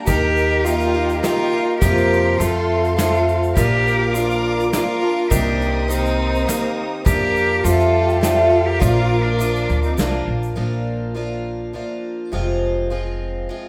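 A live, roomy studio sound with generous reverb frames this gentle acoustic folk piece in Bb major, which moves at 103 BPM in a steady 3/4 and is cut from a longer performance. A rich cello carries the melody with vibrato over a focused, bowed fiddle line, while dark chamber strings sustain chords in the background. Up front, a shimmering, octave-doubled twelve-string guitar picks the accompaniment beside a woody pizzicato upright bass, joined by softly brushed drums and a grainy egg shaker. Between about 10.1 and 10.5 s the strings, drums and shaker stop, and the guitar and bass carry a brief closing passage that reaches Fm at 12.3 s.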